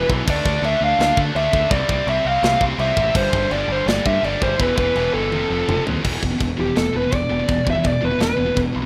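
A driving 4/4 heavy metal pulse at 166 BPM in E phrygian pushes this relentless, epic fragment cut from a longer piece, with a tight acoustic drum kit of bright china and crash cymbals, medium-tuned snare, toms and a tight kick sounding as if in a big room, under two bright, high-gain picked rhythm guitars playing riffs, one set further back, and a growling overdriven electric bass played direct and amped. Up front, a dark, bluesy lead guitar with distortion and digital delay carries the melody over chords moving Dm, C, G5, Em and F, until a drum fill from 5.3 to 6.0 s opens into a lead guitar solo over E5 from 6.0 s. The rough home demo mix has little reverb.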